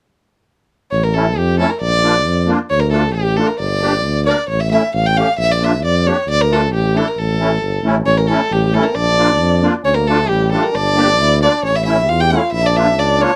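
A straight 2/4 pulse at 134 BPM drives this festive, soulful klezmer passage in A phrygian dominant, cut from a longer piece. A single bowed violin carries the melody up front, its tone smooth and even with vibrato, while a tuba anchors the bass as a warm, classical-style solo voice close to the listener. A musette accordion fills in the accompaniment from 1.1 seconds, its reedy wet tuning giving a shimmering, airy glow beneath the tune. The chords circle through A, Bb, Dm and Gm, touching D5 once before the phrase comes around again. At 8.0 seconds a bright trombone joins as a second line, sitting distant and roomy in the background with its own vibrato and a pop-style touch. Close, detailed microphones capture the group with a light reverb.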